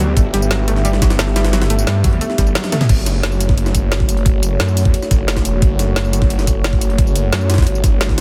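A snarling, growling detuned saw bass sits up front in this tense, dark stretch of technical drum and bass at 176 BPM in F# phrygian, moving from G to F#m over a pumping, moody analog pad. A round analog pluck plays chorused, delayed arpeggios until 2.8 s, while a knocking electronic kick lands from 0.2 s. An overdriven kit with a woody snare and bright hats drives a drum fill and band accent at 2.6 s, over a gritty, pitched-up jungle sampler kit set back in a large room, all under light reverb and a dense, heavily limited master.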